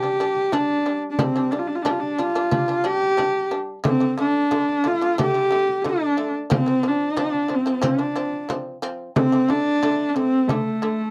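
A husky, focused horsehead fiddle carries the melody up front with vibrato and portamento, while a buzzing, plectrum-plucked shamisen plays arpeggios and a small, bright frame drum struck with soft hands keeps a close, dry pulse in this vast, solemn Mongolian folk excerpt, captured as a close 1970s-style studio recording in a small room.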